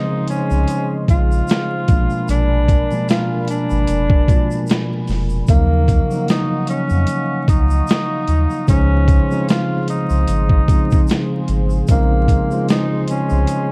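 Dark, dry production with vinyl crackle frames this reflective, nostalgic lo-fi hip hop excerpt in Bb minor at 75 BPM, swung gently on the sixteenths. A breathy tenor saxophone carries the melody with vibrato and scooped notes over a mellow tine electric piano and a moody, detuned analog pad in the background, moving through Bbm11, Bb7b9, Ebm9 and Dbmaj7. A gritty, compressed sampler-style drum kit with a thumpy kick enters at 0.3 s alongside a grainy, distant tube shaker, and a round sine sub bass joins at 0.5 s.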